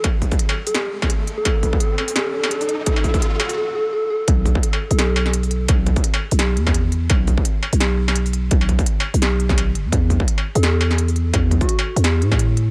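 A growling, buzzy 808-style bass dominates this heavy, dark half-time drum and bass at 170 BPM, arriving up front at the drop at 4.3 seconds and moving between B5 and E5 chords with a fast attack and decaying sine body. Before that, a build-up pairs an electronic riser with a round, gentle FM synth lead whose keys-like, vintage tone warbles through chorus, tremolo and delay while a filter sweeps across it, and a short break follows at 3.6 seconds. The lead carries the melody in a narrow span on into the opening moments of the drop, then returns briefly late in it. Throughout, an electronic kick sits up front with distortion and overdrive, joined by an industrial drum kit of clanging snare, crisp hats and struck metal, both overdriven and re-recorded in a small room for a raw, close feel. A lightly swung 16th-note groove and light reverb round out this dense, dark passage cut from a longer piece.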